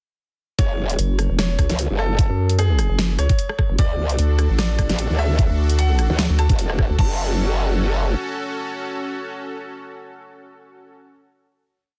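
A nasal, resonant vowel-sweep wobble bass answers a growling, saturated growl bass with changing wobble speed in this menacing, aggressive heavy wobble dubstep piece at 150 BPM in a half-time F# minor feel, driven by a knocking, up-front electronic kick and a dubstep kit with a huge soft-clipped snare and bright hats through the drop from 0.6 seconds, while a brilliant baby grand piano repeats a riff through tape echo and a lush, detuned supersaw pad pumps in at 3.8 seconds before the final F# minor chord at 7.0 seconds, all in a dry, dense, heavily limited mix.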